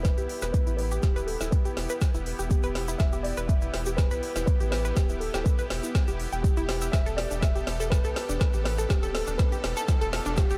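Progressive house with an emotional, driving pull, this cut from a longer piece stays on a single minor chord while it builds throughout. A mellow, vintage-toned concert grand piano carries the melody in its upper middle register, pumping with sidechain compression and passing through a low-pass filter and dub echo, with a filter sweep running across its line. Beneath it, a lush, detuned supersaw pad holds sustained chords, and a round, sine-like analog bass pumps deep in the low end. An up-front, layered electronic kick anchors the groove, joined by a deep house kit of woody snare and smooth hats, both in studio reverb, while a grainy egg shaker sits in the background and a drum fill runs across the whole passage. From 0.2 seconds a bright, wave-folded analog pluck spins arpeggios through chorus, delay and its own filter sweep, and a very quiet electronic riser enters at 8.6 seconds as the build-up continues in a dark production with light reverb.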